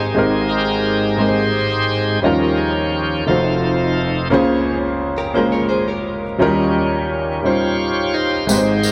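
A clear, up-front grand piano and a shouting, lightly overdriven tonewheel organ with key click and a slow rotary speaker open this soulful, hopeful slow gospel excerpt in 6/8, the organ taking the solo over rich extended chords while a clean, compressed electric guitar with chorus and analog delay adds a brief second line at 5.2 seconds and a jingly, close tambourine enters at 8.5 seconds, all within a dreamy mix soaked in plate reverb.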